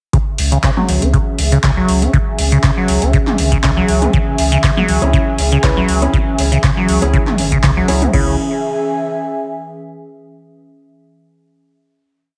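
Heavily compressed and radio-like, with light digital ambience, this raw, trippy acid house piece in C# minor runs at 120 BPM with a slight swing. An overdriven, deep four-on-the-floor kick and a metallic, overdriven drum machine with claps, hats, low toms and crash drive the groove, while a squelchy, resonant acid line with accents and slides rides over a round sine sub bass on the off-beats, both pumping against the kick. A warbling, lo-fi tape-like pad with 12-bit grit sits in the background beside a breathy, detuned pad of slowly shifting chords, a dark grand piano adds syncopated chord stabs with audible action noise from 5.0 seconds, and the airy pad holds a final C#m chord from 8.1 to 10.1 seconds.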